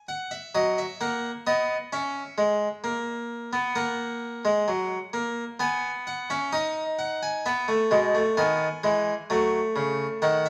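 A solo harpsichord opens the recording at once, playing a baroque-style fugue in three parts, cut from a longer piece. The mood is stately yet lively, moving in a straight, unhurried 4/4 as the voices spread from B2 up to G#5. The instrument is plucked and French in style, with a nasal, thin, bright tone placed up front in the sound. A large studio reverb lends it a wet, spacious halo, while vinyl crackle sits beneath the playing. The harmony steps through B over F#, C# minor, F# and B before reaching E over B near 7.5 seconds and F# minor at 9.3 seconds, where the passage breaks off at 10.5 seconds.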